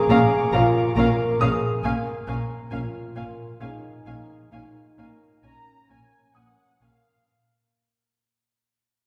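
In a slow 3/4 at 67 BPM with a straight feel, this mysterious, ominous suspense film score cue, cut from a longer piece and fading out across its 7.3 seconds, sets a fingerpicked, ringing concert harp riff beneath mellow, up-front French horn chords and a bright, brilliant grand piano texture high above, moving from Bbm7 to Db/Bb at 1.8 seconds. Muted violin sections, dark and veiled con sordino with lush vibrato, carry a melody, a second line and a brief high texture, while background violas accompany on a single Db, close cellos anchor the bass and rich, soft-attacked double basses sit underneath. A wet scoring-stage reverb with a 1.8-second decay places the ensemble further back in the room.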